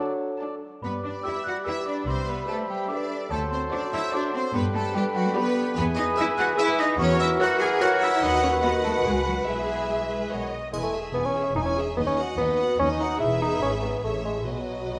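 This is a playful, whimsical film cue with a mischievous, quirky mood, moving at 146 BPM in a lilting 3/4 and starting in G major before shifting to E major from 5.8 seconds. A full orchestra carries it: two violin sections, one singing the melody with expressive vibrato and the other holding a smooth, even second line, while a dark, lush viola section murmurs accompaniment in the background. The cello and double bass sections supply the bass, with the cellos sounding distant, and a mellow, vintage-toned bassoon adds its own accompaniment. Flute, oboe, clarinet and a very quiet French horn section weave second lines and sustained chords: the flute's pure, crisp silver tone and the clarinet's dark, smooth colour sit in the background alongside the oboe's soft-attacked warmth until the winds and horns stop around 10.5 seconds. A delicate, bell-like celesta, slightly out of tune and boxy, also carries the melody from 0.8 seconds, and a dry triangle touch marks the turn into the closing phrase at 10.7 seconds. 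The whole ensemble sits in a wet scoring-stage reverb that gives the cut from a longer piece a spacious, cinematic sheen.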